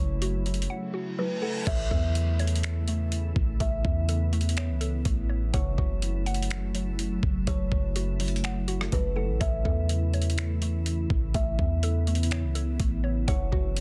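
Atmospheric cloud-rap hip hop with a dreamy, floating half-time feel, where a woody kalimba melody drifts through delay over a glassy, ethereal FM pad that pumps gently under sidechain, a round mallet-like synth pluck arpeggiates with chorus and phaser in the background, a deep, boomy 808-style bass and a gritty, pitched-down boom bap drum kit with a thumpy kick and soft-clipped snare sit up front, and an electronic reverse cymbal sounds from 0.9 to 1.7 seconds within a silent gap that runs from 0.7 to 1.7 seconds, before the chords move between F#m7 and A in this dense, heavily limited excerpt.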